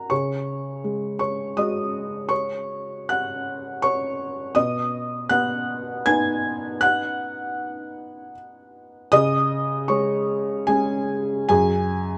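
A soft, mellow, vintage felt-muted upright piano plays alone and up front across this tender, intimate 12.2-second cut from a longer neoclassical minimalist piece, moving in a rubato 3/4 at around 71-84 BPM, tuned to A4 = 435 Hz and spanning F#2 to G#6 through F#sus2, B and C#5 chords under a light reverb.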